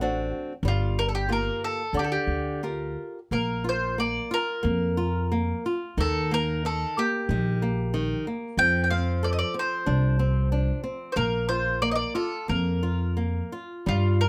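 A bright bowl-back mandolin carries the melody up front, its picked double strings ringing between F4 and G5 across the whole 14.3 seconds of this fado-style ballad cut from a longer piece. The mood is passionate and mournful, set at 91 BPM in 4/4 with uneven, rubato beats. A fingerpicked flamenco guitar with bright, fresh strings supplies the accompaniment, while a pizzicato upright bass on steel strings gives a woody, thumpy low end from G1 to G2. The harmony opens in G minor on D7 and Gm7, then moves to Bb major at 3.3 s, passing through Bb5, Eb and F5 before returning to Bb5 at 11.1 s. Close, detailed microphones and little reverb keep all three acoustic instruments intimate and present.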